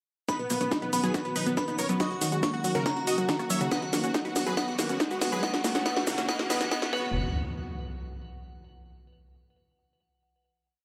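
A lush hall reverb lends space to this short, euphoric uplifting trance build, where a punchy detuned supersaw stab repeats its riff over a pedal note while a glassy, crystalline FM bell, a bright plucky unison lead doubling an octave higher, and a background unison pluck running a 16-step sequence all echo together, the bell shimmering with chorus and tremolo as the stab, lead and pluck pump. A thick, warbling pad holds sustained chords beneath, a very quiet plucky analog bass rolls in sixteenths, an overdriven four-on-the-floor kick sits back in the mix, and an up-front techno kit drives a fill with a cracking snare, metallic hats, rim clicks and shaker. A riser enters at 3.0 seconds and climbs until the chords stop at 7.1 seconds, when an impact lands as the final hit and rings out to 8.6 seconds.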